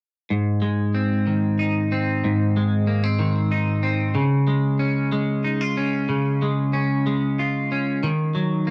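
Recorded at home onto cassette in a small, reverberant room, this short pop fragment is cut from a longer piece. It has a heartfelt, swaying feel in 6/8 at 62 BPM, counted in dotted quarters. A lone clean electric guitar plays from 0.3 to 8.7 seconds, sitting up front with a bright, twangy, picked tone dressed in lush chorus and tape echo. It ranges from Ab2 to F4 as the chords move from Ab to Db and arrive on Ebm at 8.0 seconds.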